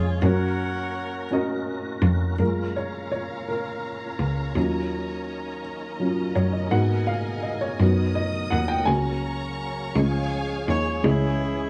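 In a small room with light reverb, this excerpt of slow, jubilant and soulful gospel in 6/8 at 55 BPM in F# major opens with a warm saxophone section carrying the melody over woody, intimate upright piano, a lightly overdriven tonewheel organ holding sustained chords through a slow rotary speaker and chorus vibrato, and a rich bowed cello bass up front, before the piano takes a solo from 2.4 seconds as a lush, expressive studio string section adds high sustained chords, and the saxophones return at 10.7 seconds.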